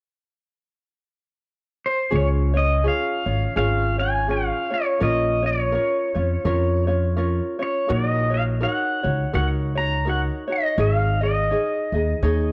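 A lightly swung 4/4 at 83 BPM sets a languid, sunny Hawaiian mood in Db major, in a passage cut from a longer piece. A twangy, fingerpicked electric pedal steel carries the melody from 1.9 seconds with slide and volume swells, and from 2.1 seconds a bright, light fingerpicked ukulele and a woody, dark pizzicato upright bass join it, moving through Db, Bbm, Gb6/Bb and Absus4. The whole recording sits in light reverb and studio ambience, coloured by worn, warbling cassette tape with drifting pitch.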